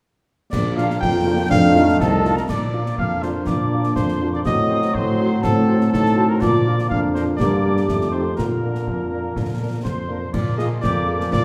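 A rousing, proud military-style march for wind band in Bb major at 122 BPM opens at 0.5 s with a clear cornet melody over a mellow, up-front tuba bass, sustained chords from a vintage-toned trombone section, a very quiet woodwind line, and concert snare, dark clash cymbals and bass drum, soon joined by a distant French horn section, a dark, smooth euphonium line from 1.0 s and a pure wooden piccolo in the background from 2.0 s, all heard from further back in a reverberant recital hall.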